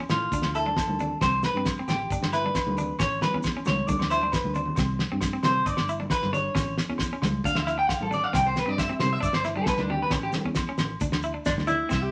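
Moderate studio reverb gives this carefree, sunny highlife guitar band a gentle sense of space, in a short passage cut from a longer piece. A clean, picked, compressed electric guitar plays arpeggios that carry a solo across nearly the whole passage, while a second clean guitar, placed up front with a vibrato effect, supplies quieter accompaniment beneath it. A round, dark fingered electric bass anchors the chords, which cycle through D5, C5, G and A. A damped 70s drum kit with a fat snare and tight kick sounds dry and present, and adds a fill at 4.4 seconds. In the background, ringing agogo bells, hard-handed vintage congas and grainy, saturated maracas fill out the percussion. At 11.5 seconds a mellow alto saxophone with light vibrato and a subtone enters up front in jazz style, just as the passage ends.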